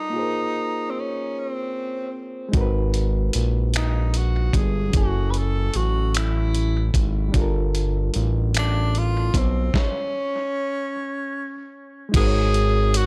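A dry, echo-heavy mix frames this sultry, late-night slow R&B excerpt in six-eight, where a warm, lightly vibratoed tenor saxophone sings a smooth, scooped jazz solo through tape echo over a reedy, barky electric piano, joined at 2.5 seconds by a fat, detuned sawtooth bass with a filter sweep and a dusty, gritty sampler-style kit of thumpy kick, snare, hi-hat, finger snaps and crash, before the band breaks into a stop from 9.7 to 12.1 seconds.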